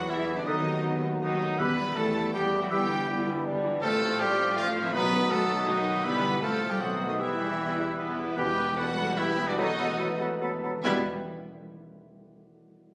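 Captured on a phone in a reverberant recital hall with added club reverb and compression, this stormy, restless excerpt from a fast romantic symphonic movement in E minor and 3/4, at 136 to 163 BPM, sets a lush, vibrato-rich violin melody over a dark, woody second violin line, smooth violas, a punchy bassoon, background trombones, distant French horns, a ringing fingerpicked harp, an up-front clear trumpet adding stabs, and a cello and double bass foundation, with a pure flute, a roomy oboe and a mellow clarinet joining at 0.5 seconds and round, soft-mallet timpani sounding briefly before returning at 8.4 seconds as the music slows from 7.8 seconds and settles onto E minor at 10.8 seconds.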